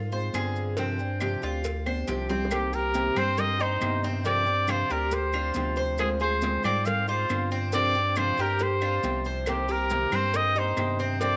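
A straight four-beat son and guajira groove drives this sultry Latin fragment of a longer piece, with high-tuned congas, tight bongos and cowbell, and woody claves ticking along in the background, while grainy maracas shake close and dry. Underneath, a deep, saturated sub bass sits up front with thick, sustained notes and a fast attack, while a fingerpicked nylon-string guitar adds classical-style accompaniment, complete with audible finger squeak. A bright, metallic Cuban tres picks arpeggios on its doubled strings, giving the opening a shimmering edge over a Dm7b5 to G7sus4 harmony. After a short drum fill, a punchy, vintage trumpet takes the solo at 2.5 seconds, singing with vibrato and trailed by tape echo as the chords move between Cm7, G7sus4 and Dm7b5. The whole mix is wrapped in a light reverb that keeps the sound warm.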